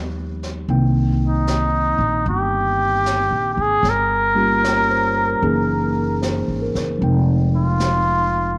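Tender and intimate, this swung jazz ballad excerpt opens with a bright, clean tine electric piano and a woody, dark pizzicato upright bass, joined at 0.4 seconds by a distant, roomy brush kit with a high-tuned snare and a rolled-off top. At 1.3 seconds a cup-muted trumpet takes the solo melody up front, soft, veiled and breathy, with light vibrato and a vintage character. The harmony drifts from Gaug7 through Cm7, Gm7b5 and Gb13 to Fm7, all set in a moderate spring reverb.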